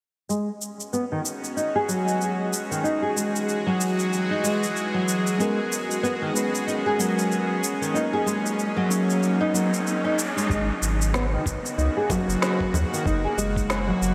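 Organic downtempo in G# minor at 94 BPM, this earthy, meditative excerpt moves with a swung sixteenth-note feel and sits in a dreamy mix soaked in a huge ambient reverb. A dark, fingerpicked nylon-string guitar plays arpeggios up front from 0.3 seconds, its finger squeaks audible through analog chorus, delay and a low-pass filter that sweeps across the passage. Beneath it, a tense, string-like bowed drone holds sustained chords with slow attack, vibrato and a pumping pulse, while electronic shaker, woody snare and congas add an overdriven, roomy groove. Muted, felt-like synth keys enter at 5.4 seconds with soft, intimate accompaniment under chorus and delay, and a background riser builds from 7.7 seconds. At 10.5 seconds the harmony returns to G#m11 as a deep, round sine sub bass and a gritty, thumpy, tape-tinged electronic kick arrive, grounding the closing bars as they move to an F#9 chord.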